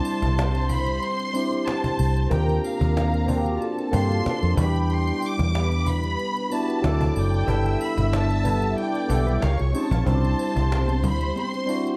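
A dark, warm production in a small room opens this excerpt of lush, romantic 1970s-style soul, with a smooth, lightly swung groove. Up front, a barky, bright tine electric piano through a phaser and a round, foam-muted electric bass carry the changes from C through Ebmaj13, Em9 and C#maj7, while a bowed violin section with slapback echo sings the melody over a soft-attack, sul tasto string section. A woody cajon and a shimmering triangle sit in the background, joined briefly by a mellow, compressed electric guitar riff at 9.3 seconds and ringing high-tuned congas at 10.1 seconds.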